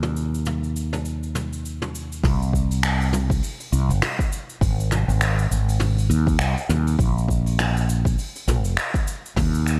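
Warm and relaxed, this short sunset chillout excerpt, cut from a longer piece, moves at an easy 101 BPM in 4/4 with a swung sixteenth-note feel in C minor. A mellow fretless electric bass carries the low end throughout, sitting up front with a dark, round, direct tone that ranges from F1 to Eb2. Alongside it, a jazz brush drum kit adds natural acoustic texture from a small room, with brushes, cabasa, finger snaps, hi-hat and toms sitting lower in the mix. At 2.2 seconds an electronic kick drum joins, deep and layered with overdrive and the ambience of a large room, giving the groove a heavier produced pulse until 9.5 seconds. The overall sound is dry and intimate, with little reverb.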